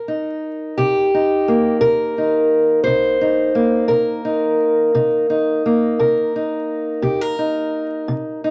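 Set in a slow, straight 12/8 pulse at 58 BPM, this smoky, mournful acoustic country blues fragment in C minor features a solo fingerpicked steel-string parlour guitar, boxy and up front, sounding from C3 to C5 over a Cm7 chord for its 8.5 seconds, with moderate studio reverb and vinyl crackle giving the production a dusky, warm cast.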